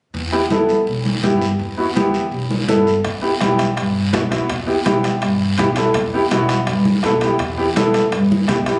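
Cumbia with a fiery, danceable drive: a woody pizzicato upright bass and a raspy, dry guiro start together, a warm upright piano with long sustain sits up front from 0.3 seconds, and ringing congas struck with hard hands stay in the background. At 3.0 seconds a soft-beatered bombo and very quiet metal-shell timbales enter, close and dry, as the arrangement moves into a new section. Captured on a phone in the room, with club and plate reverb and compression, the sound is roomy and dulled at the top, and the clip is cut from a longer piece.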